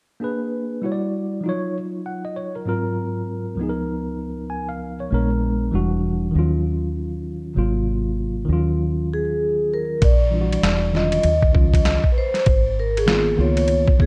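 A swung 16th-note feel at 98 BPM in 4/4 sets this nocturnal, mellow jazz-hop fragment in Eb minor, cut from a longer piece. A worn, slightly out-of-tune tine electric piano opens the accompaniment up front, its clean tone heard through built-in speakers as it moves through rich extended chords like Bb7b9, Em9, Ebm9, Ab13 and Db13. A deep, round, foam-muted fingered electric bass joins at 5.1 seconds, dark and punchy with a direct, amped character. At 9.1 seconds a close-miked vibraphone carries the melody with medium mallets, its metallic, ringing tone dry and full under a slow motor vibrato and a slapback echo. A gritty, compressed, pitched-down boom bap sampler kit arrives at 10.0 seconds with a thumpy kick, medium-tuned snare, hi-hat and ride, sitting up front as the harmony briefly settles on Bb and later Absus2. Light reverb and digital ambience frame a dark, warm production.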